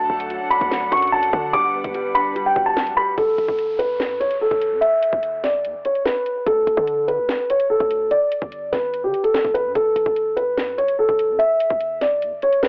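Drill hip hop at 146 BPM in a half-time feel, this ominous, tense excerpt in F# phrygian is led by a dark, intimate concert grand piano melody with audible action noise, joined until 3.2 s by a mellow, long-sustaining baby grand accompaniment and soft-attack bowed sul tasto strings, both tape-coloured, while a punchy, heavy sine-based 808 bass and an electronic drill kit with a hard-clipped kick, sharp snare, bright hats and cassette saturation drive the groove, a background downlifter sweeps in from 3.2 s, and the whole is cast through a springy, small-room, telephone-like cassette home recording.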